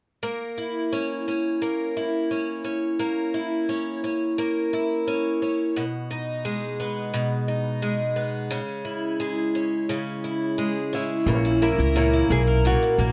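Opening at 0.2 seconds, a bright, shimmering twelve-string acoustic guitar picks octave-doubled chords up front in a wistful, tender pop excerpt at 87 BPM, moving through A#dim, G#m/B and C#m. A small, boxy nylon-string guitar takes up the melody at 10.9 seconds, and at 11.3 seconds a woody, thumpy upright bass and a warm, long-sustaining upright piano in the background join as the harmony returns to A#dim. The whole sits in a moderate small-room reverb.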